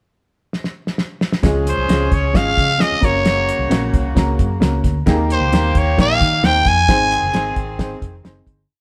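Joyful and danceable, this short 1960s-style soul piece opens with a fill on a cloth-damped, thuddy drum kit before the band enters at 1.4 seconds, the drums driving a soul beat with a fat snare on all four beats and a tight kick. A foam-muted, fingered electric bass plays a round, punchy, syncopated line with chromatic approach notes, and a worn, woody upright piano with audible action noise plays close-voiced quarter-note chords with grace notes. A smooth horn section holds swelling long notes beneath a raspy, growling trumpet stating hook phrases up front, all in a stone room with moderate reverb, before the piece fades out from 6.9 seconds.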